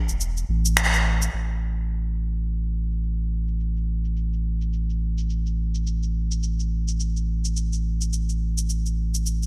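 A deep, round sine sub bass and a layered electronic shaker with finger snaps begin together at 0.1 s in this organic downtempo excerpt at 106 BPM, with a 16th-note swing giving it an earthy, mystical sway. The mellow, sustained bass sits up front with a fast attack, while the produced percussion is low-pass filtered and treated with gated reverb. A band accent lands at 0.8 s, and from 1.3 s a filter sweep runs across the drums, all within a lightly reverberant, bright 1980s-style digital sound.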